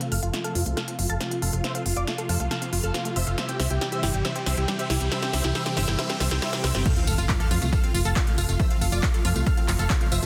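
Emotional and bittersweet, this uplifting trance passage at 138 BPM in 4/4 is cut from a longer piece and moves from a build-up into the drop at 6.9 seconds, over chords that shift from F to C and back to F. A huge, euphoric supersaw lead carries the melody with a detuned, full-bodied sawtooth tone, filter-swept during the build and colored by tape echo and sidechain pumping. Behind it sit a silky, string-like analog pad on sustained chords, a tight, driving sequenced synth playing arpeggios, and a round, warbling vintage pluck adding a bright second line high above, each pumping against the beat. A solid FM bass enters at 0.1 seconds with a punchy, dark, up-front tone, while a big-room dance kit of overdriven snare, crisp hats, handclaps, tambourine and crash runs a fill through the build. A very quiet riser climbs from 2.5 seconds into an impact at the drop, where a punchy, overdriven electronic kick lands up front in a dense, heavily limited mix with light reverb.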